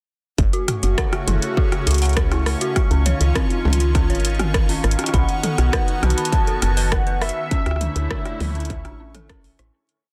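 Intricate and cerebral, this short IDM piece moves at 101 BPM in a straight 4/4, cycling through F#m, C#add9, B and Dsus2 before fading out from 6.7 seconds. A distorted electronic kick sits up front with a broken pattern, while an analog drum machine supplies metallic hi-hats, rim clicks and high toms in a glitched, ever-changing beat, its snare softly clipped and touched with delay. Underneath, a woody, round FM bass plays a syncopated riff with a fast, decaying attack, and a swirling, detuned sawtooth pad holds sustained chords through phaser and chorus. An eerie, inharmonic FM bell runs a 7-step arpeggio loop that drifts against the bar, and a bubbling, resonant texture with random filter steps holds a bright high note in its own built-in reverb. At 5.1 seconds a velvety, unison-detuned synth lead enters with a mellow, vibrato-tinged motif between E5 and A5, carried on chorus and delay. 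The mix is dry overall, with a dense, heavily limited modern master.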